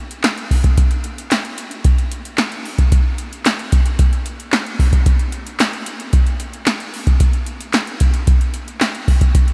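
A lightly reverberant mix carries this late-night, danceable funk groove at 112 BPM in straight 4/4, where a tape-warm, up-front analog drum machine plays from 0.1 to 9.5 seconds with a deep kick, a punchy snare, handclaps and metallic hi-hats, with a short room on the snare, claps and hats, in a short section cut from a longer piece.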